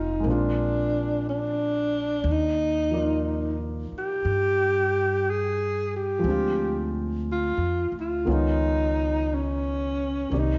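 A breathy alto saxophone carries the melody up front, close-miked with a soft subtone and vibrato, playing as the jazz soloist in a smoky, melancholic ballad with a slow swing feel. Beneath it, a grand piano supplies intimate accompaniment with short sustain and the sound of its action audible, while a woody upright bass, plucked on steel strings and placed up front, anchors the low end. All three parts play together for the full 10.6 seconds of this fragment, which is cut from a longer piece. The harmony moves through Bb9, Ebmaj9, Dm7b5 and Db9, giving the passage a wistful, unresolved color. A moderate echo-chamber reverb and studio ambience surround the trio, and the sound has a mellow, rolled-off top end that adds to its late-night haze.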